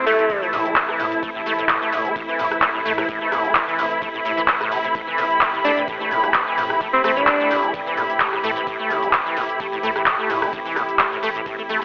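This gritty, driving acid house excerpt in A minor opens with a brief, forceful alto saxophone phrase over a detuned, warbling analog pad with chorus and a lush bowed string section, both pumping under sidechain, before the sax returns up front with vibrato and analog delay from 5.6 to 7.6 seconds. At 129 BPM with a light 16th-note swing, a squelchy, resonant sawtooth acid bass riff with ensemble chorus and delay sits over a round sine sub bass. An up-front analog drum machine supplies handclaps, metallic hats, ride, rim click and shaker above a deep kick in the background, all caught in a dry hardware recording with a telephone-like tone and a touch of digital ambience.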